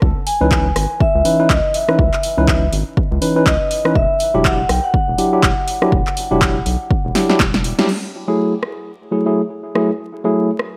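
A tine electric piano sits up front with clean stabs that pump against the beat and trail a tape echo, while a vibraphone struck with medium mallets rings out a metallic high melody through analog delay. This smooth, deep house cut at 122 BPM swings its sixteenths over an overdriven, dry electronic kick, a punchy analog drum machine with snare, handclaps, hi-hat, rim click and crash, and a round, dark bass, with chords moving from C#m9 to Em9. A drum fill and a band accent at 7.8 seconds lead into a new section on F#m9, where the bass, kick and vibraphone have stopped and the drum machine and electric piano carry on, all under light reverb and a bed of vinyl crackle.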